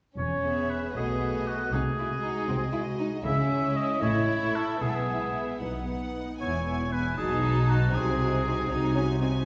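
Opening at 0.2 s with a warm, lightly vibrato oboe and a smooth-topped second violin line over rich cellos and a pure, floating double bass, this quick, lively and cheerful classical-period orchestral movement in E major moves in a rubato 6/8 at 78 BPM, joined at 0.4 s by a soft-attack violin melody played sul tasto with vibrato and an intimate, dark viola accompaniment, the orchestra heard from further back in a wet concert hall.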